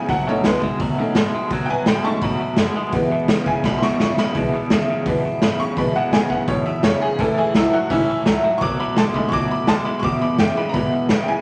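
A jangly, metallic tack piano rolls out a honky-tonk solo over a boxy ladder-braced acoustic guitar and an up-front twangy electric guitar riff with tremolo in this rowdy, rollicking rockabilly cut from a longer piece at 169 BPM in E major, joined by a thumpy, woody upright bass in the background and a gritty, punchy garage drum kit that drops a fill at 3.6 seconds, all set in a wet club reverb under a layer of vinyl crackle.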